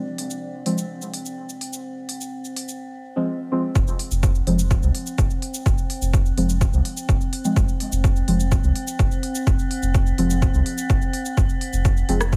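Dub techno with a hazy, hypnotic mood, cut from a longer piece and set in a steady straight four-four. An eerie, metallic FM drone hangs under the whole passage with a slow attack, chorus and its own reverb. A moody, detuned sawtooth pad holds sustained chords in the background at the opening, drops away at 2.8 seconds, and returns near the close. Soft, wave-folded chord stabs arrive early with a fast attack and decaying tails, carried by chorus, phaser and a dub echo, while a layered deep house kit of cabasa, smooth hi-hat and rim click ticks along in a small room. At 3.8 seconds a punchy, tape-toned analog kick lands up front together with a round, tube-saturated sine sub bass, and the bass, stabs, pad and drone all pump against the kick.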